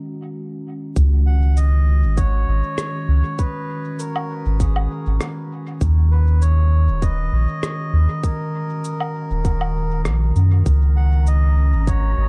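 Deep and hazy, this ambient dub excerpt moves at 99 BPM in 4/4 with a light swing, opening on a warbling, lo-fi pad with chorus and its own reverb holding a sustained Ebm chord before the rest arrives at 1.0 seconds. A round, soft sub bass and a tight, tape-warm kick sit up front, while a muffled, pitched-down kit of shaker, rim click and woodblock carries dub echo, as does the reedy, breathy melodica that enters at 1.3 seconds. Near the close, at 11.1 seconds, an airy, wind-like tuned noise texture drifts in the background, all within an echo-heavy digital ambience.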